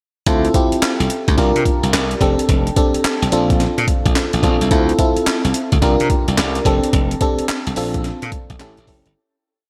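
A hard-swung new jack swing groove at 108 BPM in D minor drives this short, bouncy R&B piece, with a gritty, compressed sampler-style breakbeat kit up front, pairing a thumpy kick and a high-tuned snare layered with handclaps and hi-hat. A bright, punchy slap bass plays a swung synth-funk line with muted ghost notes, while a bell-like FM electric piano with a warbling chorus, shimmer reverb and slapback echo pushes rootless voicings through Dm9, C7sus4, F6 and Bbmaj9, closing on A7. A lush hall reverb gives the mix a big arena sound, and the piece fades out from 6.9 seconds to its end at 9.2 seconds.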